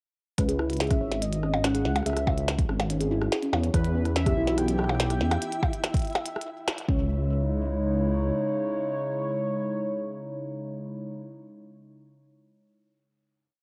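Eerie and melancholic, this short IDM piece moves at 143 BPM in C# minor, opening with a groove that runs until 7.1 seconds before resolving onto a long final chord. A deep electronic kick and a glitchy kit of clicky hats, tiny snare, rim and percussion blips sit up front with a cassette-tape grain, their broken, ever-changing beat stopping around 7.0 seconds. Beneath them a dark, detuned saw bass rumbles with long gliding notes, while a harp-like pluck, softened by chorus and tape echo, cycles a 12-step loop that drifts against the bar. A velvety lead with vibrato floats a free melody over the top through chorus, cassette and tape echo, and a hollow, flute-like pad enters at 4.0 seconds with slowly shifting chords. A faint flickering, grainy texture holds a high note in the background, and after an accent at 6.7 seconds the lead and pad sustain a C#madd9 to close, all in a lightly reverberant, homespun cassette sound.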